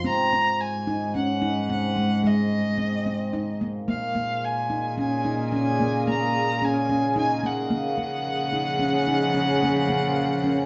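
Shimmering and restless, this short cut from a longer contemporary chamber piece moves in 7/4 at 110 BPM, with a rich, focused bowed violin singing the melody up front with vibrato over ringing, mellow handpan arpeggios and a dark, nasal gut-string cello holding the bass. At 4.4 seconds an icy, crystalline glass pad enters with sustained chords, its chorus and built-in reverb adding an airy sheen as the harmony passes from Ab7 through Bbm7 to Gbmaj9. The ensemble sits further back in a wet studio room with a softened, dull top end.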